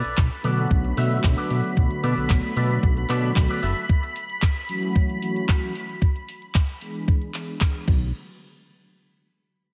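Sensual and sleek, this nu-disco excerpt at 113 BPM in B dorian sets a thumpy, up-front electronic kick and an overdriven pop drum kit with crash, handclaps and hi-hat beneath a fat, detuned analog bass, a twangy envelope-filtered electric guitar riff that plays until 3.8 seconds, dark, round synth brass with chorus and analog delay, a lush, warbling unison pad with sidechain pumping, and a filter sweep on an analog polysynth, all moving through Bm7, F#m7 and E7 in a dreamy mix soaked in hall reverb.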